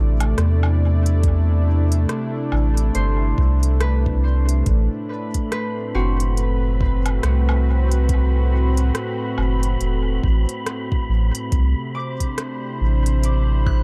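Spacious and hazy, this ambient dub excerpt moves at a slow 70 BPM in 4/4 with a swung sixteenth-note feel, set in A dorian over chords shifting from C69 to Am69 at 4.7 seconds and back to C69. A smooth, detuned sawtooth pad with chorus holds sustained chords from the start, while a deep, round sub bass of triangle and square waves sits up front, its tube saturation lending body beneath everything. An electronic drum kit of crisp hi-hats, rim click and woodblock, treated with dub echo and re-recorded in a small room for a tape-tinged character, joins alongside a soft electronic kick that enters at 1.2 seconds. A bright, ringing concert harp arrives at 2.9 seconds with fingerpicked arpeggios fed through tape echo, and from 5.0 seconds an airy, breathy wind-like noise texture with a dark tone and its own reverb drifts in on a held high note. The overall room sound stays dry, letting the echoes and the pad's haze supply the sense of space.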